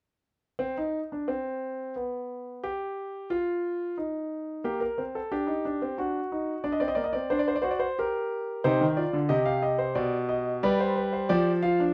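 Heard up front and intimate in a moderate stone room with a one-second reverb tail, the concert grand shows audible action noise and a deep bass. This short cut from a baroque-style three-part fugue for solo piano is solemn yet driving, moving at 90 BPM in a straight 3/4 and tuned to A4 = 441 Hz. Its opening counterpoint settles into clear harmony from about 4.6 seconds, passing through Gm/Bb, D7, Gm and Cm before reaching G7, with the smooth, vintage-toned voices spanning B2 to F5.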